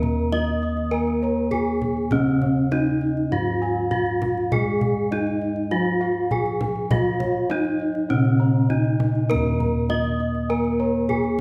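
Over a steady, straight four-four, this ceremonial, shimmering fragment of Javanese gamelan in slendro tuning puts a bright, horn-mallet bronze metallophone melody up front over a dark, smooth metallophone accompaniment struck with padded mallets, while round, airy bossed gongs and a mellow, pair-tuned metallophone with beating tones play arpeggios above, bossed gongs set in the background carry the bass, and a deep, close, dry kendang played with soft hands sounds throughout the 11.4 seconds, all in a resonant hall.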